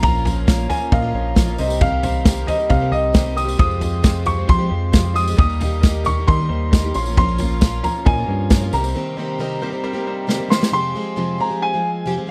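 Up front, a punchy, natural country drum kit of kick, medium-tuned snare and toms drives this wistful, stirring indie folk piece at 134 BPM in a straight 4/4, in F minor. Over it a dark upright piano carries the melody high in its range with a mellow, woody tone and long sustain. A picked, plugged-in twelve-string acoustic guitar adds a boxy, shimmering, octave-doubled accompaniment with audible finger squeak, while a bright, brilliant baby grand piano sits in the background and a distant, roomy brass section holds dark sustained chords with light vibrato. A round, direct fingered electric bass and a jingly tambourine fill out the building arrangement until both stop at 8.9 seconds, opening a break where a drum fill arrives at 10.3 seconds. The chords move through Bbm, Cm7, Fmadd9 and Eb, and the dry, close sound recalls a 1970s studio, cut from a longer piece.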